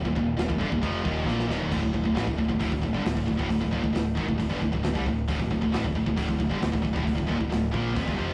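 The straight 4/4 pulse at 134 BPM drives this dark, aggressive heavy metal excerpt in D phrygian, where two bright, high-gain picked guitars, one up front and one in the background, grind out the riff over a very quiet, double-tracked sludgy overdriven guitar and a growling, direct-and-amped picked bass, while an acoustic drum kit with a tight kick, medium-tuned snare and rolled-off top enters at 0.1 seconds and throws in a fill from 1.3 to 1.7 seconds before the music moves from an Eb5 chord to D minor, all caught in a rough rehearsal-room recording with a small room's moderate reverb.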